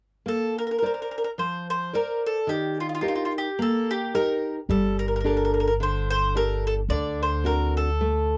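A picked bowl-back mandolin with its doubled strings carries the melody up front in this romantic, sunny Italian folk serenade in Bb major at 108 BPM with a gentle swing, over a full-bodied fingerpicked nylon-string guitar with audible finger squeak, while a woody pizzicato upright bass joins at 4.7 seconds, all captured in a dry, close 1970s-style studio sound with light reverb and a faint mains hum.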